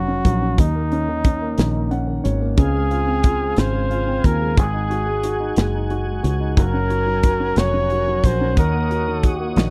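A warm flugelhorn sings the melody with pop-style vibrato over polished baby grand piano and a punchy, foam-muted fingered electric bass in this tender, swaying six-eight pop ballad in Db major at 60 BPM, with a tight-kicked acoustic drum kit up front from 0.2 seconds, a piano fill at 1.6 seconds, and a smooth tonewheel organ adding soft, lush-chorused sustained chords from 2.6 seconds, all captured in a dry, close 1970s-style studio sound in this brief cut from a longer piece.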